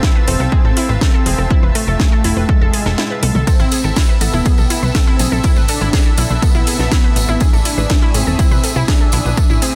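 Melodic techno at 122 BPM in 4/4, this excerpt from a longer piece sits in A harmonic minor and carries a melancholic, cinematic mood, moving from Fmaj7 to Am at 3.5 seconds. An overdriven, punchy electronic kick sits up front, joined by an overdriven house kit with a cracking snare, metallic hats, ride cymbal and toms, both re-recorded in a large room. The kick drops out briefly around 3.0 seconds with a drum fill at 3.2, and a jingly, distant tambourine enters at 3.5. A plucky, funky analog bass with a saturated, wave-folded sawtooth tone drives the low end with sidechain pumping, while a bright, detuned unison pluck spins arpeggios through delay. Alongside them, a thick, bold unison lead with vibrato and a sub octave carries the melody with delay, over a lush, chorused pad of sustained chords and a very quiet drone on A2 whose resonant overtones shift through a phaser. The dense, heavily limited master is set in digital ambience.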